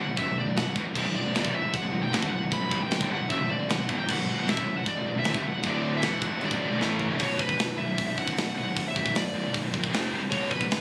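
Captured on a phone in the room, this heavy metal excerpt carries a studio reverb and ambience around an aggressive, relentless drive at 154 BPM in straight 4/4, centred on B minor. A smooth, bright overdriven lead guitar carries the melody from the top, picked between B4 and B5. Beneath it, a double-tracked crunchy guitar plays a riff in the background until 7.2 seconds, alongside two scooped high-gain guitars, one barely audible and the other sitting further back with added distortion. A growly, fuzzed electric bass holds the low end. The tight metal kit enters at 0.2 seconds, up front and mid-forward in a big room, with a medium-tuned snare, tight kick, hi-hat, toms, crash and china. A drum fill at 6.8 seconds leads into a new section, where the harmony moves from B minor and D power chords to B, F and C power chords.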